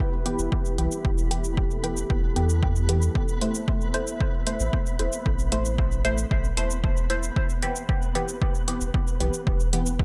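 Dub techno at 114 BPM in E minor, nocturnal and hazy and cut from a longer piece: a punchy, overdriven electronic kick sits up front over a round sine sub bass that pumps with the sidechain, an overdriven analog hi-hat and shaker ride on top, muted, detuned sawtooth chord stabs pass through phaser and dub echo under a filter sweep until 7.4 s, a moody detuned pad with chorus and sidechain pumping holds sustained chords until 7.3 s, and a flickering, grainy granular texture sits in its own reverb, the whole set in a digital ambience as the harmony moves from Em to Am and back to Em.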